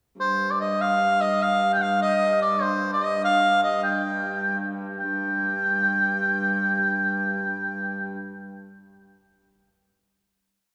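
In a straight 6/8 lilt at 100 beats per minute in dotted quarters, this short, driving and mysterious medieval dance sets a clear, lightly vibratoed shawm, roomy and up front yet distant, playing a folk-style modal melody with ornaments from C5 to G5 over a dark, woody hurdy-gurdy drone on G2, both sounding from 0.2 seconds in a wet concert-hall reverb before the piece settles on a final note at 5.0 seconds.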